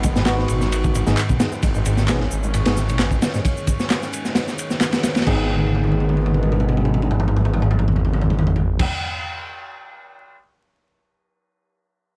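A small-room ambience with vinyl crackle frames this raw, energetic breakbeat excerpt, cut from a longer piece. Up front, a crunchy, saturated drum kit hits with gritty weight, a tight kick, a medium-tuned snare, toms, and dark ride and crash cymbals under a rolled-off top, and it runs on alone to 10.4 s after a drum fill that begins at 5.5 s. Tape-warm electronic shaker and handclaps add drive until 5.2 s, while bright, vintage congas played with soft hands sit very quietly in the mix for a brief stretch near the start. Underneath, a thick, menacing detuned saw bass holds one beating, sustained low note, and a rubbery acid bass riff with a resonant filter pluck, cassette-tape coloring, subtle chorus and delay bubbles in the background. A swirling, evolving analog pad with phaser, chorus, ring modulation and sidechain pumping sustains chords behind clean, direct electric piano stabs treated with delay.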